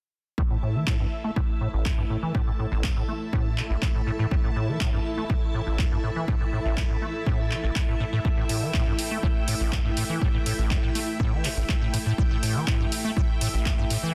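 Acid house with a gritty, raw edge, cut from a longer piece and driven by a straight 4/4 pulse. A squelchy, resonant square-wave acid bass sits up front with its riff, saturated through tube warmth, chorus and cassette tape, while a filter sweep runs across it for the whole passage. Above it, a lush vintage string machine holds sustained sawtooth chords with a sub octave and chorus, pumping against the punchy kick that also sits up front. From 0.9 seconds an analog drum machine adds handclaps and hi-hat, tape-warm and re-recorded in a small room like the kick. At 1.7 seconds a cloudy granular pad drifts in, its detuned sine tones blurred and mellow in their own reverb. The mix is dry and dense, with a heavily limited modern master.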